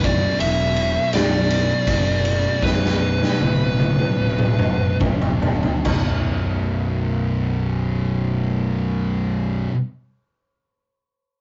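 A raw garage drum kit sits up front, its punchy kick, medium-tuned snare, toms, crash and ride sounding gritty in a bright stone room, and a drum fill runs from 2.6 s to 5.9 s, shortly before the kit stops at 6.1 s. This is a brooding, heavy stoner and doom metal fragment in B minor and 4/4, moving at a straight 69-83 BPM and slowing down through its opening stretch. A compressed, dark fuzz lead guitar carries the melody high over the mix until 5.0 s, while a growly, overdriven fingered bass pushes the low end up front. Two thick fuzz guitars grind out the riff in the background, one of them warm, and both carry on alongside the bass nearly to the end. The harmony shifts from Bm to a B5 power chord at 5.9 s. The rough rehearsal-room recording carries saturated colour, a moderate reverb and a rolled-off top end, and the clip is cut from a longer piece.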